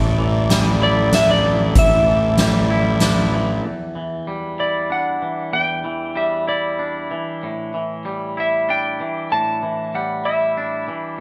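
Muted, veiled strings, a twangy, clean guitar playing arpeggios and a fuzzy, overdriven bass open this brooding, cinematic post-rock fragment in 3/4, with a soft-mallet kit bringing a fat snare and boomy kick at 0.5 seconds and a dark, slightly broken-up slide guitar carrying the melody from 0.8 seconds, while strings, bass and drums fall away by 3.6 seconds and the two guitars ring on over Em7 and A7sus4 in a moderately reverberant room.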